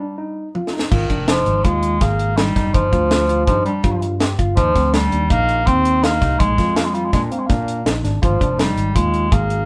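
This short excerpt from a longer piece has the sound of a band playing live together in a small, wet room. It is driving, intricate progressive instrumental music in 5/4 at 164 BPM, with a straight feel in Ab lydian. A bright, vintage-toned bass clarinet carries the melody up front in a classical style, while a barky tine electric piano plays clean, direct arpeggios above it from the start. During a brief opening break, the drums come in with a fill at 0.5 seconds. The deep reggae kit sits dry and up front, with dark cymbals, a high-tuned snare and a tight kick. At 0.9 seconds a growly, punchy fretless electric bass joins, and the harmony moves from Absus2 through G5, Ebmaj7 and Bb7 before returning to Absus2.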